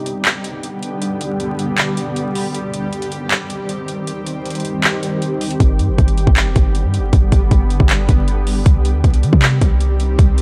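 A dry, gritty recording with vinyl crackle carries this brooding, melancholic trap excerpt in C harmonic minor at 157 BPM in a half-time feel, where a blurred, detuned granular cloud pad sustains G and C minor chords in its own reverb beneath an up-front electronic drum kit of hard-clipped kick, metallic hi-hats and handclaps, until a deep, boomy sine 808 bass enters at 5.6 seconds.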